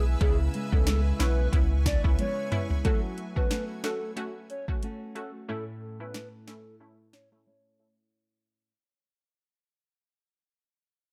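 Bouncy and tough, this short dancehall cut from a longer piece rides a swung 91 BPM groove in 4/4, set in F# minor and moving through C#m7, F#m and A. An electronic afro-pop kit sits up front with a deep kick, sharp snare, metallic hats and toms, while a punchy sine sub bass with a pitch-drop attack anchors the low end until 2.2 seconds, where a drum fill takes over. A soft, hollow, woody clarinet-like synth lead carries the melody with vibrato and chorus, over a round, detuned analog pluck with sidechain pumping and a fingerpicked nylon-string guitar playing classical-style arpeggios, finger squeaks and all. A cloudy, evolving granular pad adds blurred sustained chords high above before dropping out at 2.8 seconds. From that point a filter sweep and a fade-out shape the rest of the passage, and the overall production stays dark, close and nearly free of reverb.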